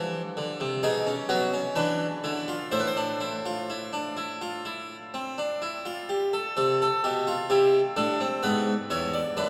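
An up-front, full-bodied Flemish-style harpsichord, plucked on two sets of strings, carries this short baroque-style three-part fugue in a driving yet contemplative mood, moving into a new section at 6.6 seconds within the long, wet reverb of a cathedral-like hall.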